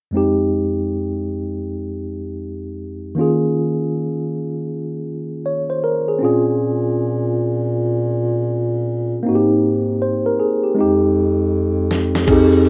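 At 79 BPM in 4/4, with a lazy swing on the sixteenths, this sultry, soulful neo-soul and R&B excerpt in F minor drifts along at an unhurried pace. A mellow tine electric piano plays the accompaniment from the start, clean and up front, moving through Fm9, Eb9sus4, Bbm7 and Abmaj9 before returning to Fm9. At 6.2 seconds a breathy bass clarinet takes the bass part, dark and close-miked, with light vibrato and scooped notes in a jazz style. A dusty, sampler-style drum kit arrives only at 11.9 seconds with a brief fill, sounding compressed and gritty with a thumpy kick, a fat snare, hi-hat and crash cymbal. Moderate studio reverb gives the rough home-demo mix a modest sense of space.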